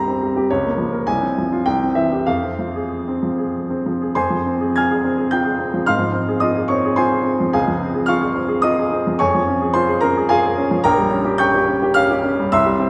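Romantic classical character piece for solo piano in F minor, stormy and brooding, moving in a rubato 3/4 at 93-111 BPM. A clear, open baby grand with short sustain sits up front across a range from Bb1 to Ab6, passing through chords such as Fm, C, Dbmaj7 and Gdim/Bb, while a wet concert hall reverb places the listener further back in the room over this 12.9-second excerpt from a longer work.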